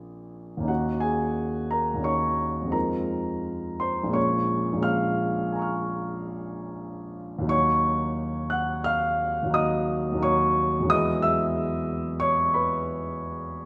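In an unhurried 5/4 at 88 BPM, the beats fall unevenly and the time bends with rubato, giving this hazy, dreamy impressionist piano piece a floating, untethered feel. A solo concert grand carries the whole 13.7-second section, reaching from deep bass up to high notes, its warm, open, long-sustaining tone set up front in a lush concert-hall reverb. Cut from a longer piece, the harmony drifts through minor-seventh colours before settling on a glowing Eadd9 at 10.9 seconds.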